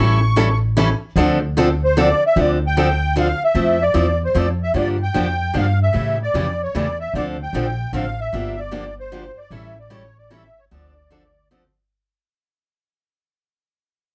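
Virtuosic and swinging, this short cut from a longer piece is acoustic string swing in the gypsy jazz manner, set in a lilting triple metre. A reedy musette accordion carries the melody with a shimmering, smooth tone, taking a solo turn over the first 2.4 seconds. A bright, boxy parlour-style picked steel-string acoustic guitar supplies the accompaniment, with audible finger squeak. An upright bass, plucked on gut strings, anchors the low end with a woody, thumpy, dark sound, and all three instruments sit up front in the mix. The harmony cycles through minor-key changes such as Dm7, Gm7 and A7, while light reverb and a worn, warbling cassette-tape pitch drift give the recording an aged feel, as the music fades out from 2.4 seconds to the end.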